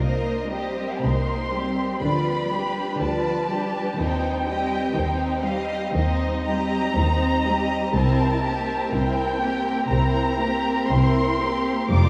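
Bathed in a wet cathedral reverb with a 6.6-second decay, this tender, rubato slow romantic movement for string orchestra, cut from a longer piece, moves at 53-63 BPM in 4/4 over Cm7, G7/D, Cm/Eb and C7: an up-front violin section sings the expressive, lush melody with vibrato, a second violin section adds a focused second line, violas carry the accompaniment with portamento, a close, rich cello section sits in the background, and a warm, smooth, even double bass section anchors the bowed low end.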